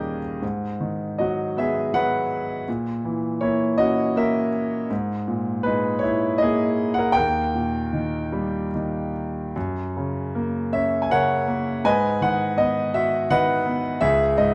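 A lone concert grand piano opens the recording, sounding clear and intimate, with the noise of its action audible up close and a deep bass. This is lyrical, melancholic classical piano in G# minor and 3/4, taken with rubato at roughly 71-84 BPM, spanning C#2 to G#5. The harmony moves from G#m7 through A#dim, G#sus2 and D# in the opening passage. A new section begins at 9.6 s on F#, returns to G#m7, and reaches C#m at 14.0 s. The piano's long sustain carries a slightly boxy character, set in light reverb within a dark production. The recording is cut from a longer piece and stops at 14.5 s.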